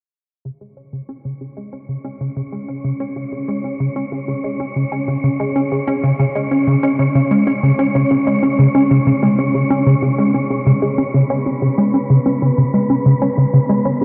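Steeped in a huge, wet reverb with an 8.0-second tail, this excerpt of cosmic, expansive, sequencer-driven space music at 94 BPM in 4/4, tuned to A4 = 439 Hz, rides on a punchy, funky analog bass riff, set up front with a wave-folded filter pluck, subtle chorus, cassette tape coloring and tape echo, that fades in from 0.5 seconds, while an airy, breathy, wind-like tuned noise layer with a slow attack and long release enters at 2.2 seconds and swells in through 10.7 seconds, where the piece moves into a new section.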